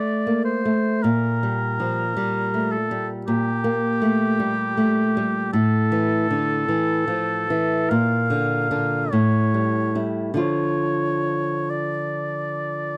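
Oboe and nylon-string guitar begin together at 0.0 seconds in this yearning, melancholic romantic duo, a 13-second passage cut from a longer piece. The oboe carries the melody in a classical style, its warm tone close-miked and up front, shaded with a light vibrato. Beneath it, the small, warm acoustic guitar is fingerpicked as accompaniment, also placed up front. The pace is slow, around 45-55 BPM in 4/4 with a rubato feel, set in D minor and tuned to A4 = 439 Hz. The harmony moves from D5 through Gm/Bb, A5 and Bb to A7, settling on Dm at 10.4 seconds. The sound is dry and intimate, a close 1970s-style studio recording with a touch of small room ambience.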